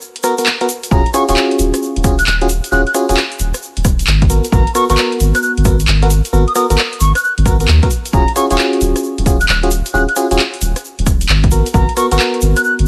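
A two-step garage groove at 133 BPM in 4/4 swings its sixteenths at 65%, with a grainy egg shaker starting alone at 0.0 seconds before an overdriven garage kit of metallic hats, handclaps and rim clicks arrives at 0.2 seconds alongside glassy FM electric piano stabs with a bell-like attack and a warbling chorus. At 0.9 seconds a punchy analog kick and a deep, round dub sub bass drop in together, while a bright, airy wooden flute takes the melody, close-miked and expressive with a straight, tongued tone. The harmony in Eb minor opens on a rootless Abm9 and then moves between Ebm11 and Abm9, giving this short, bouncy cut from a longer piece a late-night feel. The kit, bass and electric piano sit up front, with the shaker tucked into the background. The sound is dry with little reverb, colored by vinyl crackle and lossy compression artefacts.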